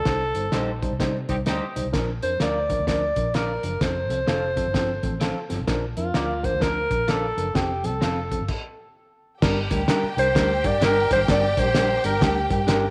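Joyful and warm, this uptempo 1960s-style soul excerpt swings in 4/4 at 128 BPM as a mellow, up-front alto saxophone with tape echo carries the melody over a dark, foam-muted fingered electric bass, a clean tine electric piano, a muffled, cloth-damped drum kit with a fat snare, and slightly broken-up guitar stabs from a small old amp in the background, while a tight horn section adds a brief second line near 1.3 s, the band stops at 8.5 s, and a lush, distant violin section enters at 9.4 s, all set in a light small-room reverb.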